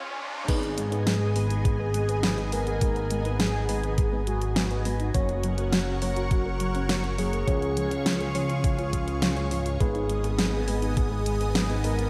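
A straight 4/4 synthwave pulse at 103 BPM in G# dorian, driving and nocturnal, is set in motion by a thumpy, tape-warm electronic kick and a layered pop kit with a fat, up-front snare, gated reverb, hi-hat and crash, after an electronic riser plays with the lush, detuned unison pad alone until 0.5 seconds. A glossy, chorused synth bass with tube saturation pumps alongside the bright pad's sustained chords. Meanwhile, a soft octave-layered lead with vibrato carries the melody through digital delay and shimmer reverb, supported by very quiet round plucked arpeggios and dark FM electric piano stabs over G#m, F# and C#, all within a moderate hall and a crisp 1980s-style digital sheen, the kick dropping out at 11.1 seconds in this excerpt from a longer piece.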